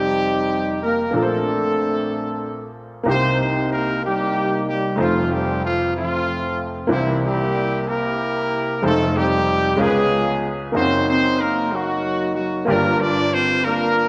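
Gospel in a slow 6/8 at 62 BPM, this uplifting, soulful passage, cut from a longer piece, features a jazz-style horn section carrying the melody in octave doubling with a warm tone and light vibrato. A woody, clear upright piano with short sustain supplies the accompaniment through chords such as Bbmaj9, Cm7 and F7, then turns to Db7 and Gb6 before reaching Gm7, with both instruments placed up front across the 14.1 seconds. A wet concert hall reverb with a 2.0-second decay surrounds the pair, and the tuning sits at A4 = 439 Hz.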